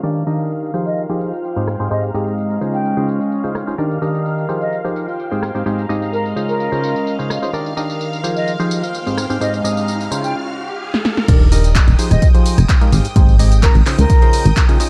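Piano house at 128 BPM in straight 4/4, this feel-good, joyful passage is cut from a longer piece and cycles through Ebmaj7, Abmaj7 and Dbmaj9 chords in a dark production with a low-pass filter, light reverb and digital ambience. Up front, a hollow, organ-like stab with a noise layer and a wave-folded edge plays the riff, colored by chorus, phaser, dub echo and sidechain pumping. High above it, a shimmering vintage string machine holds bright violin chords with ensemble chorus and its own pumping, while a nasal, reedy chamber string section adds a bowed, gut-string texture until 10.3 seconds. From 0.9 seconds a pure concert flute carries the melody with a crisp attack and dub echo, over a punchy analog drum machine playing snare, handclaps, hi-hat, rim click, tambourine and crash. A filter sweep and an electronic riser in the background build through a drum fill to the drop at 11.3 seconds, where a dry electronic kick and a round, mellow FM bass with sidechain pumping arrive up front and the harmony adds an Fm9.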